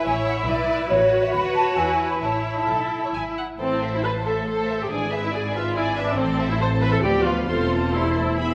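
Heard through the reverb of a recital hall, this lively, graceful fragment of a quick classical-period orchestral movement in 3/4 moves at 129-143 BPM with rubato and turns from A major to A minor at 3.6 s: a woody, distant violin section carries the melody over a lush, expressive second violin line, an airy, hollow flute section shares that second line until 3.1 s, a dark, up-front viola section supplies the accompaniment, rich, focused cellos and smooth, even double basses hold the bass, and a warm, soft-attacked French horn section enters at 3.6 s with sustained chords in the background.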